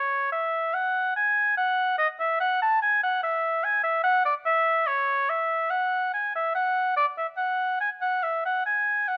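Dance-like and radiant, this brief excerpt from a longer baroque-style classical fantasia features a solo oboe alone for its full 9.2 seconds, its vintage, warm tone placed up front in light reverb as it moves freely in rubato through a lilting 3/4 at about 72 BPM within the span of C#5 to A5.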